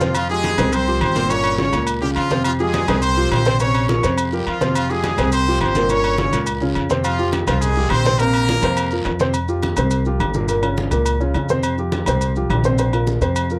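Fiery and danceable, this salsa clip, cut from a longer piece, opens with a brilliant, punchy horn section carrying the melody up front until 9.1 seconds, over a dark, woody upright piano and a thumpy pizzicato upright bass on gut strings. Beneath them, low-tuned congas struck with hard hands sit distant in a large room, joined by ringing metal-shell agogo bells and timbales, grainy maracas and a raspy, saturated guiro that drops out at 9.3 seconds. The close, dry 1970s-style studio sound carries light reverb, and the closing stretch leans on suspended harmonies as the rhythm section drives on.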